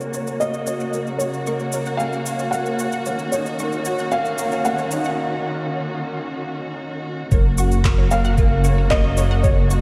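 Tender and hopeful, this short cut from a longer piano and strings electronica piece moves at 113 BPM in 4/4, with a felt-muted upright piano carrying a soft, boxy melody through tape echo over a warm concert grand riff treated with ensemble chorus. Beneath them, a dark, distant string section holds lush bowed chords with sidechain pumping, a rumbling detuned saw bass sits up front, and electronic shaker and handclaps tick along, while a very quiet unison pluck spins arpeggios up high, all bathed in a dreamy cathedral reverb. After a build-up and a break starting at 5.2 seconds, a muffled, thumpy kick drum enters at 7.3 seconds for the drop, returning to Gb.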